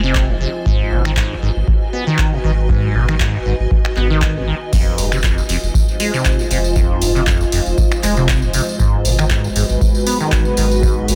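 A lightly swung 4/4 groove drives this hypnotic acid house cut from a longer piece, with a deep electronic kick and a booming analog drum machine of metallic hi-hats, crash, finger snaps and handclaps, plus a jingly acoustic tambourine joining at 4.7 seconds. Up front, a squelchy, resonant sawtooth acid bass riff runs through phaser, overdrive, lush chorus and dub echo over a round sine sub bass with tube saturation, both pumping to the sidechain as the harmony moves between Fm7 and Abm7. A blurred, bright granular cloud pad hovers above from the start, and a moody, detuned analog pad with chorus adds dark sustained chords from 5.7 seconds, all set in a light reverb.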